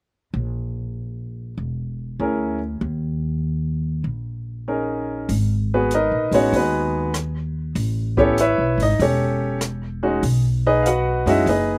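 Dry and close, with little reverb and an open-air feel, this excerpt from a late-night, smoky swing jazz piano trio opens on a woody, plucked upright bass, sitting up front from 0.3 seconds. A clear, intimate baby grand piano carries the melody from 2.2 seconds, its action noise audible and its notes ringing with long sustain. At 5.3 seconds an airy drum kit joins softly in the background with hi-hat, rim clicks and a boomy kick, as the harmony moves through G#m7, A9 and B6.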